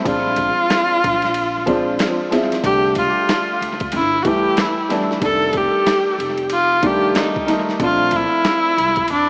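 A swung 4/4 groove at 93 BPM rides on a gritty, compressed boom bap drum kit of thumpy kick, snare, hi-hat and ride, pitched down and sampled, with a woody pizzicato upright bass underneath, in this mellow, smoky jazz-hop excerpt. Up front, a single bowed viola carries the melody with a nasal, focused vibrato, while a smooth, vintage grand piano accompanies through chords such as Bb9, C69, F13 and Bbmaj9 before dropping out at 8.7 s. Analog delay trails the viola, piano and drums, and the echo-heavy mix sits in spring reverb with vinyl crackle and a small-speaker tone.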